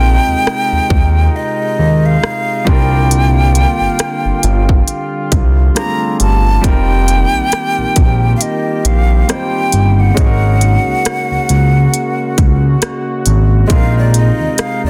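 Moody and late-night, this slow contemporary R&B excerpt in F minor at 68 BPM with a swung 16th feel sets a breathy jazz flute with vibrato and delay over clear, intimate baby grand piano, distant mellow brass chords with sidechain pumping, a smooth, saturated sawtooth synth bass up front, and a crisp trap drum kit of hi-hat, hard-clipped kick and rim click entering at 0.5 seconds, all moving through suspended ninth chords in a dense, heavily limited modern mix.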